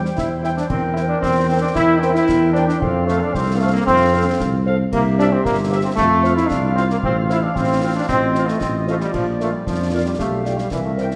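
Spirited and rousing, this brief excerpt from a military-style wind band march in 2/4 pushes bright, up-front trombone chords and a dark, close-miked tuba bass over a very quiet, distant trumpet melody, a mellow woodwind second line and background French horns with light vibrato, while a close, dry concert snare, bass drum and dark-toned clash cymbals drive it all through a wet concert hall reverb.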